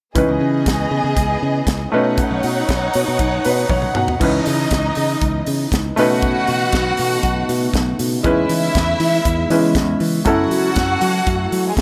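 A straight 4/4 disco groove at 119 BPM drives this danceable excerpt in C# minor, cut from a longer piece, with a modern studio drum kit laying down a punchy kick, a high-tuned snare, hi-hat, toms and crash cymbal in an airy, polished small-room sound. A fingered electric bass holds the low end with a direct, punchy tone, while a clear concert grand piano with deep bass and short sustain plays the accompaniment, moving through C#m9 and B9 chords. A lush, bowed studio string section sits up front as the second line, its vibrato expressive and its top smooth. The piano plays a fill from 3.2 seconds and the drums a fill from 3.7, leading into a new section at 4.2 seconds where the harmony continues on to E6 and F#m7. At 5.2 seconds a deep, dark ambient pad enters in the background with a slow attack, detuned sawtooth and sub-octave layers, chorus and its own reverb, adding a moody haze under the light overall reverb.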